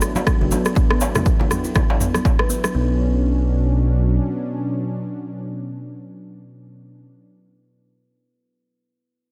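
A detuned sawtooth analog pad with chorus opens this short cut from a longer afro house piece, holding soft, mellow chords in B minor. It is joined from the start by a buzzing, woody kalimba playing filtered arpeggios through a digital delay, a tape-warmed house kit with rim click and toms, and a grainy, bright cabasa. Within the first moments, bright congas tucked in the background and a crisp, saturated metal-shell darbuka fill out the percussion, while a punchy, up-front electronic kick and a smooth, nasal synth bass anchor the low end, with the pad, kalimba and bass all pumping against the sidechain. The groove moves at 121 BPM in 4/4 with a 57% swing on the 16ths, giving the spiritual mood a gentle, rolling lilt in a small room ambience. The kick and darbuka drop out at 2.4 s and the remaining drums and percussion at 2.7 s, leaving the pad, the ringing kalimba until 3.0 s, and the bass, which stops at 4.2 s. 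The pad sustains alone until 7.0 s.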